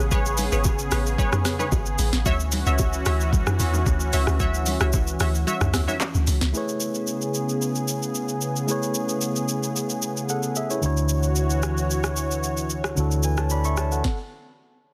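Warm and soulful, this amapiano excerpt moves at 112 BPM in a straight 4/4 in A major, tuned slightly flat of standard pitch. It opens at full force, with a deep, round log drum bass that has a fast, percussive attack and a dark decay, plus punchy, detuned sawtooth chord stabs carrying chorus and delay. Underneath, a smooth, warbling vintage pad sustains Amaj9 and Dmaj9 chords with chorus and sidechain pumping, while soft-handed congas and bongos sit in the background and an up-front electronic drum kit pairs a soft kick with a sharp, softly clipped snare, hats, claps, rim clicks, shaker and toms. The kick drops out from 5.5 to 6.5 seconds, and the stabs fall away at 6.0 seconds. At 6.5 seconds the log drum gives way to a bright, barky tine electric piano as the harmony returns to Amaj9. A dark, hollow-body electric bass enters at 10.8 seconds on the move to Dmaj9, and the band stops at about 14 seconds within a dry, dense, heavily limited modern mix.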